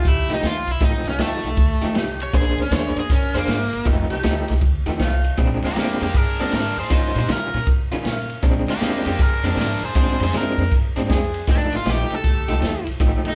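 Electric blues shuffle at 158 BPM with a laid-back, soulful swing, where a bright, crunchy overdriven guitar takes an up-front solo over a slightly broken-up, lo-fi electric guitar riff with tremolo, tight saxophone stabs with light vibrato set in the background, a woody, thumpy pizzicato upright bass and a vintage drum kit with a punchy kick and dark cymbals, the whole band playing live in one large, moderately reverberant studio room over F9, Bb9 and Eb9 chords.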